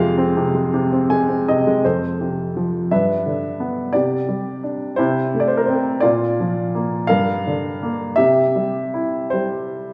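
Swaying in a lilting 6/8, the rhythm breathes freely with rubato and uneven beats, giving this short, calm passage from a longer classical piece an unhurried, lyrical feel. A single upright piano carries everything as a solo, its woody, polished tone sitting present and up front, spanning from F2 up to Ab5. Between 0.7 and 1.8 seconds the piano plays a brief fill that leads into a new section. The harmony opens on a minor chord before brightening into major at 1.8 seconds, then drifts through a gentle, singing progression that settles on C. A wet concert hall reverb with a 1.7-second decay surrounds the instrument, lending the recording the spacious, resonant air of a church or concert hall.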